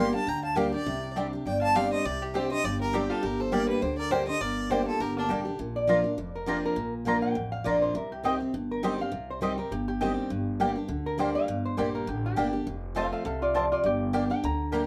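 Driving and lonesome, this swung bluegrass excerpt in G minor runs at 204 BPM, opening with a clear, focused fiddle carrying the melody up front until 5.3 seconds while a nasal, metallic lap resonator guitar played with fingerpicks adds a second line. From 5.6 seconds the resonator takes a steel-bar slide solo over chords moving from Bb through Cm and F back to Gm. Beneath it, a bright, full-bodied picked dreadnought guitar accompanies, a double-strung mandolin adds woody stabs, and a thumpy, gut-strung upright bass anchors the low end, all set in a small room.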